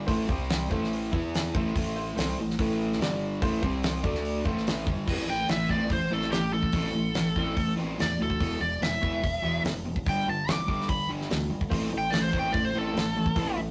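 A straight 4/4 groove from a damped 70s drum kit, with its fat snare and tight kick up front, drives this swaggering classic rock excerpt, where an overdriven semi-hollow guitar and a dark, sludgy distorted guitar carry the riff over a punchy, bright fingered bass, a woody, slightly detuned upright piano adds a fill at 0.9 seconds before falling away and returning at 11.7 seconds, and a biting lead guitar takes a solo from 5.1 seconds, captured in a rough, tube-saturated rehearsal room with a small, wet reverb.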